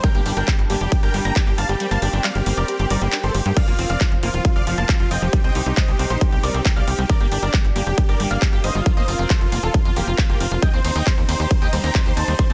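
A euphoric, bittersweet uplifting trance excerpt opens with a huge, detuned supersaw lead carrying the melody over a punchy up-front kick, metallic hats, handclaps and cymbals, a tight, nasal sequencer bass, squelchy, resonant acid arpeggios, a distant, reedy string section holding dark chords and an open-sounding grand piano line with long sustain in the background, with sidechain pumping on the synths, piano, strings, hats and cymbals in a dense, heavily limited mix, while the kick drops out between 1.8 and 3.6 seconds.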